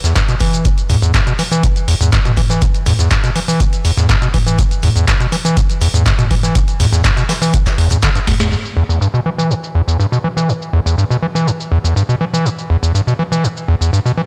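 An overdriven, squelchy acid bass riff with sidechain pumping and tape echo drives this hypnotic, gritty acid house excerpt in E minor at 122 BPM, backed by a booming analog drum machine with crisp snare, metallic hats, handclaps, shaker and toms, a deep electronic kick that drops out after a drum fill and band accent near 8.4 seconds, and a very quiet, dark brush drum kit, while the bass filter sweeps from 8.5 seconds in a dry, saturated hardware sound with small room ambience.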